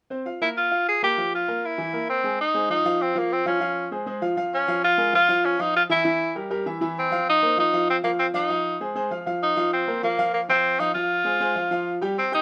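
Latin excerpt in F minor at 196 BPM, fiery and driving, in which a bright, open baby grand piano accompanies from 0.1 seconds while an up-front tenor saxophone with a vintage character and clear, scooped notes carries the solo melody from 0.4 seconds, all heard through close, detailed microphones and light reverb.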